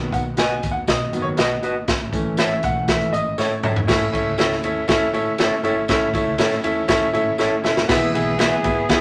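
A clear, intimate baby grand piano sits up front and carries the opening as a solo feature through 3.9 seconds, its action noise audible beneath natural chords in this uplifting, uptempo 1960s-style soul excerpt at 120 BPM in a straight 4/4. A punchy, airy big-band drum kit with dark cymbals and a medium-tuned snare drives the groove, marking the ends of phrases with fills. Beneath them, a round, foam-muted electric bass stays in the background, a very quiet tonewheel organ holds soft, flute-like sustained chords with key click and rotary-speaker shimmer, and a jingly tambourine adds close, dry sparkle. An electric guitar through a small old amp punctuates with slightly broken-up, lo-fi picked stabs. At 7.9 seconds a tight, distant horn section with light vibrato enters on a second line as the harmony moves from B and A to E, all set in a moderate studio room.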